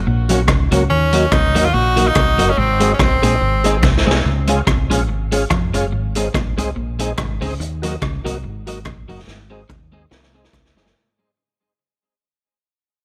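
A swung ska beat at 143 BPM drives this cheerful, bouncy clip from a longer piece, with a street-band drum kit up front laying down hi-hat, boomy kick, rim click and a medium-tuned snare in a small-room sound with a rolled-off top. A dark, round fingered electric bass sits just as far forward, punchy and direct, while a very quiet clean picked guitar plays a low riff and an electric guitar at the edge of break-up adds compressed accompaniment through tape echo. A smooth tonewheel organ punctuates with stabs, its key click colored by chorus vibrato, a slow rotary speaker and tape echo, and crisp group handclaps sit faintly in the background. An edgy, forceful tenor saxophone carries the melody from 0.9 to 4.1 seconds, its punchy pop-style vibrato up front and trailed by tape echo. The harmony moves through Gb, Ebm and Ab before a drum fill at 3.8 seconds leads into a second section on Db, Ab and Ebm that fades out from 4.2 seconds, closing on another drum fill, all within light reverb and studio ambience.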